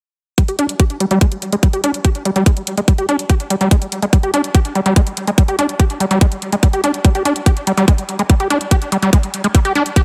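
Psychedelic trance at 144 BPM in 4/4, psychedelic and intense, cut from a longer piece. An overdriven acid bass riff between G3 and G4 sits up front, squelchy and gritty with a resonant sawtooth bite, distortion, cassette-tape colour, tape echo and sidechain pumping, and a filter sweep runs across it from 0.4 to 10.0 seconds. A tight, overdriven electronic kick drives hard up front alongside a quieter overdriven hi-hat, all within light reverb and a heavily compressed, radio-like sound.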